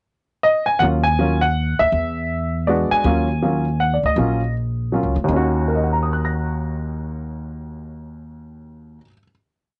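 This jazz piano trio piece is a short, complete work in Eb minor, swinging and moody at 160 BPM in 3/4 with a lilting swing on the eighth notes. The upright piano enters at 0.4 seconds with a pickup, then carries a motif-based melody of hook phrases over syncopated comping in rootless voicings. Its sound is intimate and slightly detuned, with a short sustain and audible action noise. The pizzicato upright bass joins at 0.8 seconds in a two-feel, growly and woody on steel strings, and both instruments sit up front. The harmony moves from Ebm7 to E9 and back to Ebm7, arriving at a final chord at 5.3 seconds. A moderate booth ambience and the soft grain of a home cassette recording give the whole piece a close, private character.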